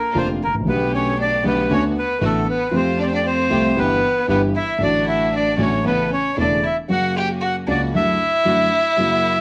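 Nostalgic and playful, this rubato tango excerpt in D major at 116 BPM sets a reedy, up-front bandoneon melody against a warm violin second line sung with vibrato and portamento, while a dark, mellow concert grand piano with deep bass supplies the accompaniment and a rich symphonic string section adds distant, smooth stabs in the background, all in a moderate large studio reverb captured by close, detailed microphones.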